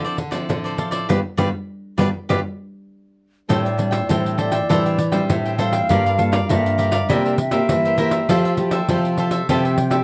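A mellow, airy silver concert flute takes an expressive solo with vibrato and a soft attack from 3.5 s, as this lively, joyful samba-and-choro passage settles into A minor at 100 BPM in a straight 4/4. Beneath it, a full-bodied, fingerpicked nylon-string guitar plays a deep, up-front bass line with audible finger squeak, while a warm second fingerpicked nylon guitar, a crisp, bright picked cavaquinho and a jingly pandeiro played with soft hands fill out the accompaniment, joining in a band accent from 1.1 s over G after an opening Dm9. Light reverb and close, detailed microphones keep each acoustic part clear as the harmony moves through Am7, Gm9, C7 and Fmaj9.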